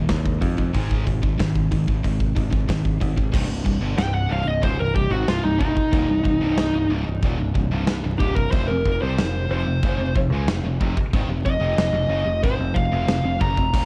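Aggressive and dark, this heavy metal excerpt in C phrygian drives at 92 BPM in a straight 4/4, with a double-tracked high-gain rhythm guitar grinding out a low riff over a growly, direct picked bass and an airy, polished big-room drum kit of punchy kick, medium-tuned snare, hi-hat and bright crash and china cymbals roughened by 12-bit sampler grit, until a warm, up-front distorted lead guitar with analog delay enters at 4.0 seconds to solo over Cm and F5 chords, the whole mix dry and gritty beneath a layer of vinyl crackle.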